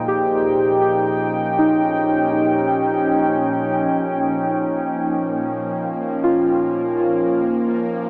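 At a slow 62 BPM in a straight 4/4, this brief ambient excerpt drifts with a reflective, melancholic mood. A warbly, tape-like pad sits up front, holding sustained chords from Bb2 up to G5, with chorus, its own reverb and a filter sweep running through the whole 8.1 seconds. Alongside it, muted, felt-like synth keys play soft, intimate arpeggios between Eb4 and G4, their dark, vintage tone smeared by chorus and a diffuse ambient delay. At 4.3 seconds a bowed, string-like drone enters on Bb3, quieter in the mix, its bright, tense tone given vibrato, a phaser and reverb. The harmony moves from Dbmaj9#11 over Bb to Eb9 over Bb at 3.3 seconds before settling on Bb minor at 7.2 seconds. The whole piece is bathed in a huge, wet reverb with a long tail, yet it comes through with a small-speaker character.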